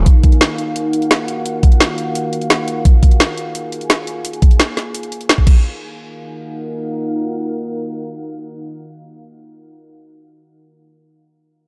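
A dark, warm production with light digital ambience frames this short cut from a longer dark technical drum and bass piece, running at 172 BPM in Eb minor with a moody, futuristic air. An overdriven electronic kick with a knocking punch sits up front alongside a layered kit of woody snare, bright hi-hats and crash cymbal, both playing from 0.1 to 5.5 seconds. Beneath them a deep, warbling pad of detuned sawtooth unison and sine sub octave holds a sustained Ebm chord through to 9.2 seconds, colored by chorus, its own reverb and sidechain pumping.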